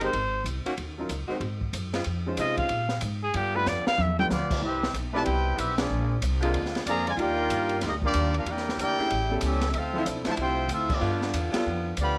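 A clear, vintage-toned solo trumpet with vibrato opens this joyful big band swing excerpt at a brisk 188 BPM, riding over sustained chords from a bright saxophone section, a deep-bassed concert grand piano, a woody pizzicato upright bass up front, and an open drum kit with dark cymbals, a high-tuned snare and a boomy kick. After a drum fill, the trumpet section takes the melody at 4.3 seconds with a soft attack and smooth top, while a tight, close-miked trombone section with light vibrato carries a second line in the background. Band accents land at 5.7 and 10.9 seconds, and the whole band sits in light reverb and small room ambience.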